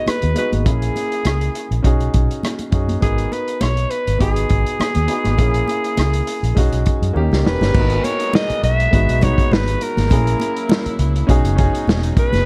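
A growling, raspy alto saxophone carries the melody up front in this lush, bittersweet 1970s-style soul excerpt in G# minor at 102 BPM, backed by an intimate concert grand piano with audible action noise, a round, foam-muted electric bass, a muffled vintage drum kit with dark cymbals that plays a fill at 7.2 seconds, and bright, damped congas in the background, before soft, floating strings enter at 7.7 seconds to add a cinematic glow to the dark, dry production.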